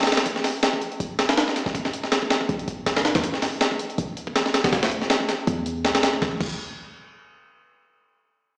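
A swung 161 BPM breakbeat in 4/4 drives this nostalgic, frenetic drum and bass and jungle fragment. Its gritty, compressed sampler-style kit of thumpy kick, high-tuned snare, hi-hat and crash cymbal sits up front with high-pass filtering and studio reverb, joined at 1.0 seconds by a deep, boomy, warm 808-style sine bass with a noise layer, fast attack and tube saturation, while the mix rings through an echo chamber ambience like a big sound system in a bare room heard on a small speaker.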